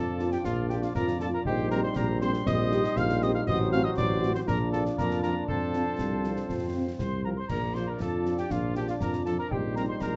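A proud, festive military-style march for wind band in Bb major, moving at 119 BPM in a straight 2/4. A solo cornet with light vibrato carries the melody, while a wooden, pure-toned piccolo, a clear woodwind section and a distant, roomy euphonium add second lines. Tight trombones hold sustained chords, and a mellow horn section fills in the accompaniment from 0.2 seconds. An up-front tuba anchors the bass, and close, dry concert snare, bass drum and dark-sounding clash cymbals drive the beat, all in a dark production with moderate reverb.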